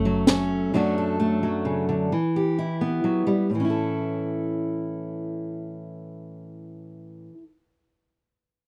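Folk in 3/4 with an anthemic, warm mood, cut from a longer piece. A fingerpicked steel-string acoustic guitar carries the accompaniment throughout, up front and warm with fresh strings and audible finger squeak, moving from F#m through D/F# and Em before settling on A at 3.5 s. A round, dark, foam-muted electric bass sounds only in the first 0.7 s, all within a dry, close 1970s-style studio sound.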